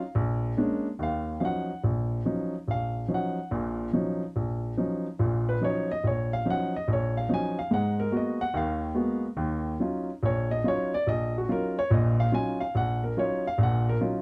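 A natural-sounding baby grand piano, up front with a short sustain, plays solo jazz through this 14.2-second cut from a longer piece, swinging at 143 BPM in 4/4 with a late-night mood in Eb minor, moving from a Bb7#9 pickup into Ebm9, shifting to Abm9 at 7.7 seconds and returning to Ebm9 at 9.4 seconds, set in a dark production with light reverb.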